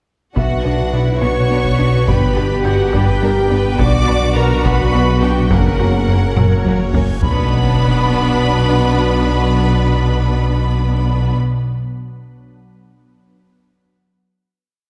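This tense, relentless cinematic cue blends orchestra and electronics in a slow 6/8 at 70 BPM in B minor. It opens at 0.4 seconds with nearly everything at once: a smooth, clear studio violin section carries the vibrato melody up high, over a background of lush symphonic strings, with more distant violins on repeated notes, rich violas doubling the tune at the octave, cellos weaving a counter-melody, and focused double basses marking the beats. Beneath them a saturated sine sub bass holds a deep drone, a round analog bass pulses an ostinato, and heavy, compressed taiko drums pound a big ostinato. Sustained chords come from a warm French horn section and a very quiet, dark trombone section, joined at 1.0 seconds by a pure, organ-like pad with chorus and its own reverb. A very quiet, juicy, squelchy resonant pluck pulses its own ostinato, while a boxy felt-muted upright piano with audible action noise adds sparse single notes. 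The Bm, G, Bm, F# progression leads to a drum fill, and at 7.1 seconds a huge reverse cymbal and sub drop lead into a low impact as the piece settles onto a long final B minor chord of strings, brass, pad and bass. The whole is heard from further back on a scoring stage, with a wet, spacious reverb.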